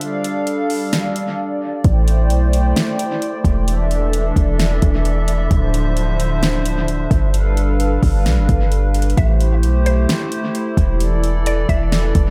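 Atmospheric cloud-rap hip hop in A minor at 131 BPM with a half-time feel, ethereal and hazy, built on a hollow, flute-like pad with chorus and sidechain pumping, a smooth R&B kit of fat snare and metallic hats soaked in dub echo, a deep, boomy 808-style bass arriving at 1.8 seconds, a breathy, wind-like tuned noise texture in the background, and a woody mallet-like synth pluck carrying the melody from 9.2 seconds through chorus, phaser and echo over chords moving from Am7 through E7sus4, Dm9 and G7.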